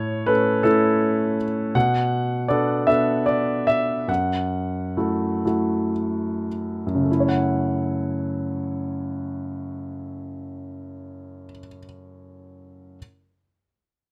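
Wistful and melancholic, this short cut from a longer classical work is a lyrical solo grand piano piece in F# minor and 6/8, moving slowly at roughly 34-54 BPM in dotted quarters with a free, rubato feel that slows between 1.8 and 7.1 seconds. The piano sounds clear, intimate and natural, placed up front with long sustain and audible action noise, captured by close, detailed microphones with light reverb. The harmony passes from A through Bm7 to F#m7 before a contrasting passage begins at 7.1 seconds.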